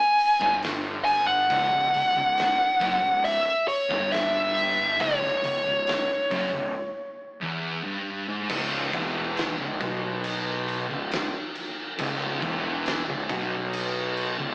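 This slice of stoner and doom metal moves at a slow, straight crawl, its mood ominous and sludgy. An up-front fuzz lead guitar, dark and distorted with wah, carries the melody from the opening until 7.6 seconds, just after a break begins at 6.8 seconds. Beneath it, two picked fuzz guitars sit in the background playing a heavy low riff, one tone warm and the other dark. A growly, overdriven fingered bass with tube saturation thickens the bottom end. An oversized, low-tuned acoustic drum kit fills a bright, pumping stone room with a fat snare, boomy kick, dark cymbals and gritty saturation. Once the C# minor chord arrives at 8.5 seconds, the riff continues, and the whole mix carries a rough rehearsal-room quality, light reverb and the thin, narrow colour of an AM radio.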